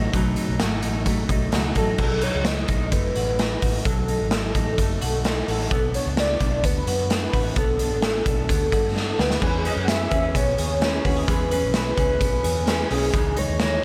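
Set in light reverb, this youthful, nostalgic jangly indie pop excerpt rides a saturated, punchy garage drum kit and a dark, foam-muted fingered electric bass, while a twangy electric guitar through a small old amp plays arpeggios with harmonic tremolo and slapback echo, a full-bodied fingerpicked steel-string acoustic guitar accompanies at the opening and returns at 9.4 s after a drum fill, and a velvety, detuned synth lead carries the melody from 1.8 s with chorus, vibrato and slapback echo.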